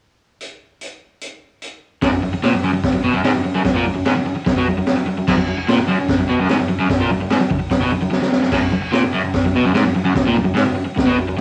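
Garage rock with a raw, swaggering mood, this short cut from a longer piece moves at 147 BPM in a straight 4/4, in F# major with tuning sitting at A4 = 441 Hz. A drum kit opens alone at 0.4 seconds, acoustic and gritty, with a high-tuned snare, a boomy kick, hi-hat and crash cymbal, its sound saturated and mid-forward with a rolled-off top, placed up front as if in a small room. At 2.0 seconds a crunchy, overdriven electric guitar enters with a picked riff in its low register, from F#2 to B2, double-tracked, warm and up front. A drum fill arrives at 8.1 seconds before the riff and kit carry on to the close. The whole thing has the feel of a home cassette recording, with a wet booth ambience and studio reverb.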